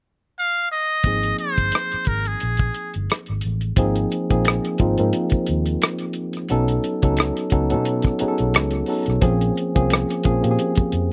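Smooth and soulful, this neo-soul R&B fragment, cut from a longer piece, rides a lightly swung sixteenth-note feel in 4/4. A trumpet with a metal mute opens the recording alone at 0.4 seconds, its buzzy, brilliant tone carrying a light vibrato, breath and a slapback echo before it falls silent at 2.9 seconds. At 1.0 seconds the band settles in: a worn, slightly out-of-tune tine electric piano sounding through its built-in speakers, a dark, round, foam-muted fingered electric bass, and a cloth-damped, thuddy drum kit with a tight kick, hi-hat and rim click under a rolled-off top. An egg shaker with finger snaps and a group handclap joins at 3.8 seconds, sitting close yet in the background. The harmony moves from Ab69 through B9 to Bbm9, and the dry outdoor sound keeps the trumpet, piano and drums up front.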